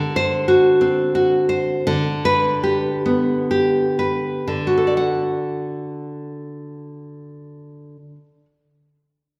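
A full-bodied, fingerpicked nylon-string guitar with audible finger squeak plays alone from 0.0 to 8.5 s in this nostalgic, warm romantic classical excerpt in 3/4 and D major, tuned to A4 = 441 Hz, moving rubato between 57 and 95 BPM and slowing over the opening 4.5 seconds as D7 turns to G/D and then resolves to D at 4.5 s, the guitar sitting up front yet heard from further back in a recital hall with a wet 1.8-second reverb.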